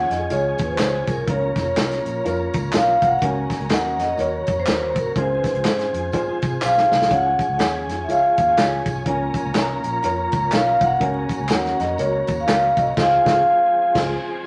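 A soft-mallet vibraphone rings up front with slow motor vibrato, carrying the melody over a dark, woody, slightly detuned upright piano, smooth tonewheel organ chords with key click and fast rotary speaker, a round, foam-muted fingered electric bass, a roomy, distant soul drum kit with dark cymbals, and background tambourine and handclaps in this uplifting, swinging 1960s-style soul excerpt at 123 BPM, framed by wet studio reverb and vinyl crackle, with a drum fill at 6.6 seconds and a band accent from 13.0 seconds.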